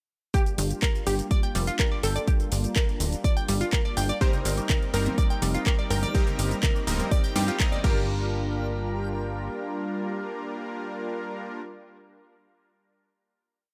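Driving and emotional, this short progressive house piece opens straight into a drop, with a punchy four-on-the-floor electronic kick up front, a house kit of metallic hi-hats, shaker, handclaps and crash pumping under sidechain, and a funky, off-beat plucky analog bass. Above them, a glassy wavetable pluck spins a crystalline 16-step arpeggio with tape echo, a lush, detuned unison pluck with 12-bit sampler grit repeats a riff melody, and a smooth analog pad sustains chords in the background as Gm7 moves to Eb6. From 4.2 seconds a detuned supersaw stab adds held chords with syncopated pushes, joined by a very quiet loop of tribal congas and woodblock and a dreamy, reversed swelling texture on a held high note, before the drums drop out at 7.9 seconds. The stab, pad and unison pluck then ring out, with the bass lingering briefly, over a final hit from 8.1 seconds.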